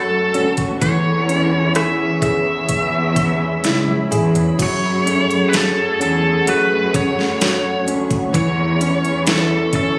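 A slow, straight 4/4 pulse at 64 BPM from an up-front, produced R&B drum kit with knocking kick, deep snare and smooth hats carries this heartbroken, longing pop ballad excerpt in F# minor, where a biting, overdriven lead guitar with delay sings the melody over clear, woody upright piano, a very quiet clean electric guitar picking arpeggios, a mellow, ethereal pad with chorus and tremolo in the background, and a lush bowed cello section holding the bass, and after a drum fill at 3.6 seconds a dark, distant French horn section adds a soft-attack second line from 4.6 seconds, the whole captured on a phone in the room with studio reverb and compression.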